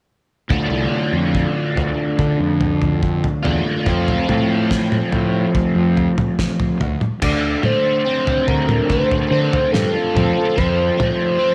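This mysterious, trippy psychedelic rock excerpt opens at 0.5 seconds with a biting overdriven guitar riff, double-tracked and up front, its picked tone churned through a rotary speaker. Beneath it sit a round, fuzz-soaked fingered electric bass and a cloth-damped, thuddy acoustic drum kit with a fat snare, tight kick, toms and dark crash cymbal, all playing a straight 4/4 feel over Dm and F. After a brief chordless moment, a shimmering, retro pulse-width lead enters at 7.2 seconds, sustained and dressed in chorus, vibrato and tape echo as it sings over Dm7 and F. A moderate echo chamber reverb gives the recording a hazy, spacious air. The guitar and lead carry on to 11.5 seconds, where the passage is cut from a longer piece.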